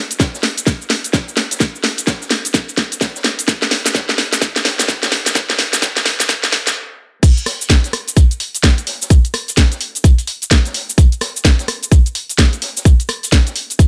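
Swaggering and aggressive, this swung 128 BPM house excerpt opens with a build-up and a drum fill that runs to 6.8 seconds, then a brief stop before the drop at 7.2 seconds, driven by a tight, up-front electronic kick and a layered garage kit with a cracking snare, hi-hat, rim click, shaker and crash, while a vintage acoustic kit with a high-tuned snare and filtered, rolled-off hats sits in the background under light reverb.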